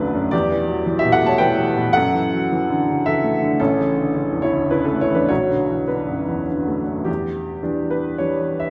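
Neoclassical minimalist piano, wistful and intimate, moving in a rubato 3/4 at roughly 100-113 BPM. A solo upright piano with a woody, vintage tone and long sustain sits up front from 0.0 to 8.7 s, spanning A1 to A5 and moving through Em7, Dadd9/F#, A and Bm7 before returning to Em7 at 7.1 s. A wet recital-hall reverb gives this short excerpt the air of a church or concert hall.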